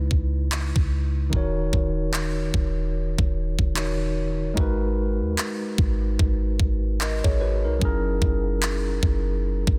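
Sensual and longing, this contemporary R&B excerpt moves at 74 BPM in 4/4, with a 58% swing on the sixteenths and tuning set to A4 = 443 Hz. A tine electric piano carries the accompaniment up front, its clean, warm tone sounding as if played through built-in speakers across a range from C#3 to D#5. Beneath it, a deep 808-style bass with a sine character and fast attack decays into dark, boomy lows between D#1 and D#2. A trap drum kit enters at 0.1 s, its electronic handclaps and knocking kick pushed forward and roughened by overdrive. The harmony moves from C#m9 to D#m7, G#m9 and F#9 in a dry mix with little reverb and a dense, heavily limited modern master.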